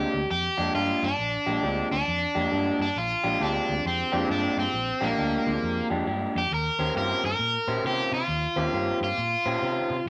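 Gritty and laid-back, this electric blues shuffle excerpt swings at 135 BPM in Bb mixolydian, with a bright, crunchy overdriven guitar up front carrying the melody over a slightly broken-up, lo-fi riff from a guitar through a small old amp, a dark, round, foam-muted fingered bass, and a clear grand piano with long sustain in the background that drops out at 9.1 seconds, all set in a moderate large studio reverb as the harmony moves from Bb13 to Eb13 at 6.5 seconds.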